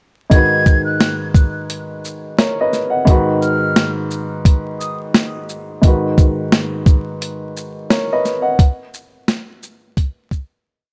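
Boom-bap hip-hop at 87 BPM with a gritty, moody swing in G# dorian, built on a loop of held, spread G#m7 chords with short fills from a woody, cassette-tinged upright piano, a breathy, vibrato-laced concert flute whose short looping melody carries a digital delay until 5.0 s, and an up-front, compressed, pitched-down sampler kit with a thumpy kick, high-tuned snare, quarter-note hats and shaker that plays on alone after the piano stops at 8.6 s, continuing to 10.5 s as the track fades out, all under vinyl crackle and light reverb.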